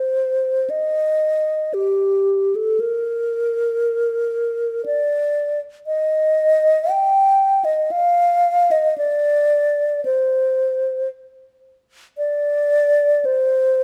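A lone alto flute opens this short classical excerpt, its mellow, hollow tone sitting close and up front from the first moment. The piece moves freely and expressively at around 58 BPM in 3/4, with uneven beats and a rubato feel that lets each phrase breathe. Staying between G4 and G5, the flute plays tongued notes with vibrato and an airy edge that adds to its serene, nostalgic mood. Close, detailed microphones capture the instrument's breath and texture, while a moderate recital hall reverb of 1.4 seconds gives it a soft sense of space. Cut from a longer work, the passage runs for 13.8 seconds.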